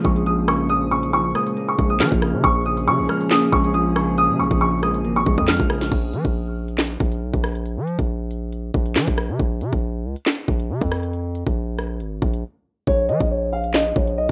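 A dark, boxy grand piano melody with delay opens this menacing half-time drill excerpt, over a clean, fingered electric guitar, a warbling, lo-fi tape-like pad with chorus and its own reverb, a saturated, heavy 808-style bass and an electronic drill kit with a hard-clipped kick, sharp snare, crisp hats, rim clicks, handclaps and crash. At 5.9 seconds the piano, guitar and pad drop out, leaving the aggressive distorted bass and up-front drums to carry an ominous break until the piano returns at 12.9 seconds. The rough home demo mix sits in a moderate plate reverb with a digital ambience.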